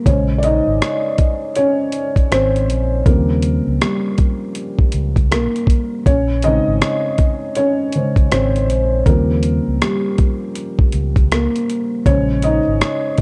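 A felt-muted upright piano opens this nostalgic, reflective lo-fi hip hop excerpt in Bb dorian at 80 BPM with a swung 16th feel, its mellow, intimate tone and audible action noise up front over a gritty, sampler-style kit of thumpy kick, hi-hat and rim click, while a round, amped fingered electric bass anchors the Bbm7 to Eb13 changes in a dark production with light reverb.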